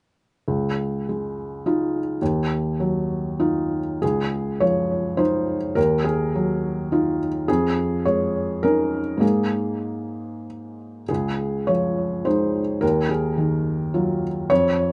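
A felt-muted upright piano carries this neoclassical minimalist fragment alone, sounding soft, mellow and close, with the audible clatter of its action adding an intimate, natural texture. It moves in a flexible, rubato 3/4 at roughly 92-110 BPM in Db major, spanning Db2 to Db5, and a slapback echo gives each phrase a doubled edge. The harmony circles gently between Dbadd9 and Ebmadd9, later passing through Dbadd9/F and Absus2 before settling back into the opening pair. A brief opening statement gives way at 4.0 seconds to a longer second passage that runs to 14.9 seconds, where this cut from a longer piece ends. The sound is dry and up front, recorded outdoors with a dark top that stops at 10.4 kHz, leaving an intimate, hopeful mood.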